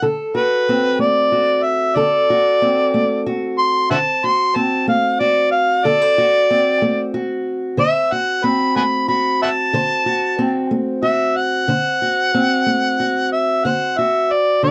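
Acoustic country blues in D mixolydian at a slow 62 BPM in 12/8, swaggering and gritty, with an amplified, overdriven harmonica up front taking a jazz-style solo full of vibrato, tongue slaps and scooped notes with a soft attack, over a fingerpicked old ladder-braced acoustic guitar whose woody, boxy tone on old strings holds a D7 chord, all in a dark production with moderate booth ambience, cut from a longer piece.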